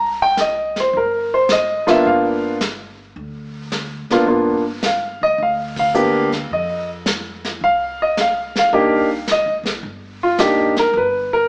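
Late-night and moody, this short cut from a longer jazz piano trio piece swings at 108 BPM in 4/4, settled in C minor. A clear concert grand piano carries the melody up front, natural in tone with a deep low end, moving between Bb3 and Bb5 over changes that pass from C5 through G7#9, F5 and Cm7 to G(#9). Beneath it, a pizzicato upright bass with steel strings gives a woody, thumpy foundation, sitting well below the piano in level. A vintage brush drum kit joins at 0.4 seconds, its brushed snare, hi-hat, tight kick and dark ride cymbal heard with an acoustic, small-room character. The band hits a shared accent at 5.7 seconds. The trio plays live together in one room, with moderate large-studio reverb and a small-speaker sound.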